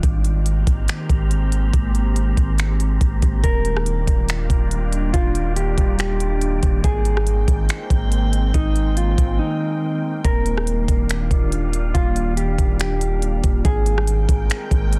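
A glassy FM pad with ensemble chorus and reverb opens this blissful, dreamy cloud-rap hip hop piece at 141 BPM in a half-time 4/4 feel. It plays alongside a deep, sine-toned 808-style bass, an up-front trap kit of knocking kick, crisp hats, finger snaps and rim clicks, and a faint, breathy wind-like noise texture, all drifting between Abmaj9 and Ebmaj9 in Eb major. At 3.4 seconds a dark, clean electric guitar melody with tape echo enters, and a brief break arrives at 9.4 seconds within the dense, heavily limited, dry mix.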